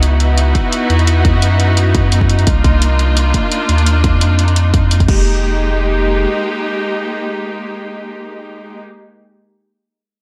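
In a digital ambience with small-room reverb on the drums, this dreamy, soulful liquid drum and bass fragment at 172 BPM in F dorian sets lush, bowed symphonic strings holding clear, up-front sustained chords with vibrato over a deep, round sine sub bass, as a produced pop kit's crash and warm hi-hats and a punchy layered electronic kick entering at 0.6 s drive it until the drums stop at 5.2 s, after which bass and strings continue and the strings finally ring alone to 8.8 s over minor eleventh harmony.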